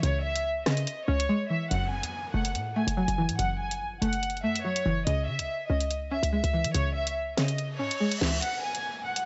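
Menacing and dark, this half-time drill hip hop cut at 143 BPM in C# minor pairs a soft-attack, sul tasto violin section melody with delay against a twangy, chorused resonator pluck and a punchy, tight 808-style bass, while an up-front drill kit with a sharp snare, bright hats and 12-bit sampler grit plays throughout; a downlifter and reverse cymbal enter at 1.7 s after a brief silent gap, and the bass and pluck stop at 8.4 s for a closing break.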